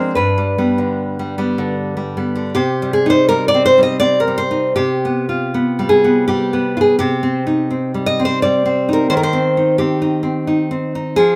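A moderate stone-room reverb surrounds this live recording, placing a fingerpicked nylon-string guitar up front with an acoustic, warm tone. The romantic solo classical guitar piece in C minor moves in a rubato 3/4 at roughly 72-88 BPM, its wistful, intimate mood spanning G2 to Eb5. After an opening G chord, a new passage begins at 2.6 s on C minor, moving through G7/C before settling on Cm/Eb at 9.1 s as this portion of a longer piece closes.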